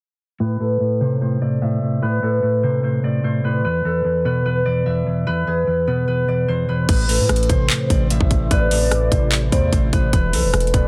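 A half-time trap groove kicks in at 6.9 s, as the up-front drum kit's hard-clipped kick, metallic hats, handclaps, rim clicks and crash land with a punchy, sine-heavy 808 bass, after an opening in which a ringing, fingerpicked concert harp melody and a dark, clean electric guitar accompaniment sit under a filter sweep; a velvety, detuned synth lead with chorus and delay then slips in softly in the background, followed at 7.7 s by a deep, moody pad with chorus, phaser and reverb, giving this menacing, melancholic hip hop excerpt a dense, heavily limited, dry finish.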